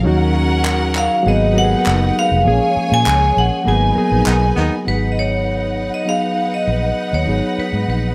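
A lush, bittersweet 1970s-style soul passage at 100 BPM in G# dorian opens with a round, foam-muted electric bass up front, a reedy electric piano, smooth bowed strings on a second line, and very quiet, mellow French horns holding chords until 4.9 seconds. Hollow handclaps join at 0.7 seconds, and a ringing vibraphone played with hard mallets carries the melody from 1.0 seconds, while a punchy horn section adds brief stabs as the band plays accents through the middle. The cinematic cut sits in a small room with light reverb, moving over D#m7, G#m9 and A#m7 chords.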